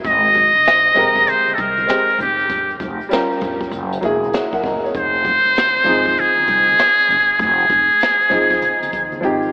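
Jazz-hop at 98 BPM with a swung 4/4 feel, this smoky, mellow excerpt from a longer piece has a buzzy, metal-muted trumpet up front, playing a vibrato-laced solo with scooped notes and tape echo over Abmaj9, Gm7b5, Gb9 and Fm7 chords. A woody, growly pizzicato upright bass and a brushed drum kit with a boomy kick anchor the groove, while a very quiet, band-limited tube shaker and congas sit underneath. An intimate grand piano with audible action noise and lush chorus enters at 0.9 s and adds a fill at 4.0 s, and the whole dreamy mix is soaked in huge ambient reverb with an AM radio tone.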